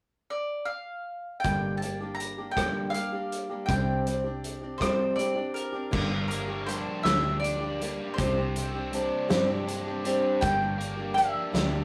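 A slow, straight 6/8 sway at 53 BPM in dotted quarters carries this reflective, wistful folk rock and heartland rock cut in G minor, where a mellow, double-strung mandolin opens the melody at 0.3 s. At 1.4 s the band joins over Gm and Csus2: a woody, boxy old ladder-braced acoustic guitar with aged strings, a round, foam-muted fingered bass, and a loose, distant indie kit with dark cymbals, a fat snare, a tight kick, hi-hat, rim clicks and crashes. At 5.9 s a biting, double-tracked overdriven guitar adds a riff colored by spring reverb, all captured in a rough rehearsal-room sound with moderate studio reverb.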